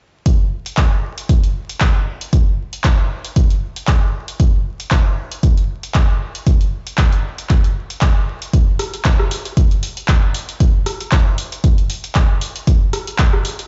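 The recording sounds as if it were played through a big sound system in a bare room, with large studio reverb, a layer of vinyl crackle and a muffled top end that stops at 7.7 kHz. This short excerpt of a house track is purely rhythmic, with a warm, hypnotic mood and a swung 16th-note feel. An analog electronic kick drum sits up front with a punchy thump, entering at 0.3 seconds and dropping out at 13.3 seconds. Behind it, an analog drum machine supplies handclaps, hi-hat and rim click at a lower level, carrying on until 13.7 seconds. Both drum parts were re-recorded in a small room.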